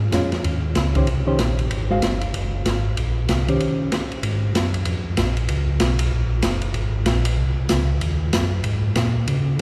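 A fast swing in four drives this short bluesy soul jazz organ trio fragment, with the eighth notes lightly lilting and the mood easy and swinging. The open acoustic drum kit sits up front, moving between hi-hat, ride cymbal, snare and a boomy kick, its dark cymbals and rolled-off top giving the kit a smooth, muffled glow. A mellow tonewheel organ carries the bass line low in its register, round and clean with a key click and a gently shimmering chorus vibrato. A dark, clean hollow-body electric guitar plays fingered accompaniment from 0.1 seconds and falls away at 3.9 seconds. The harmony leans on suspended and added-note colours with a brief chordless moment, and the whole trio is bathed in a long, wet cathedral reverb that makes the performance sound as if it fills a church or concert hall.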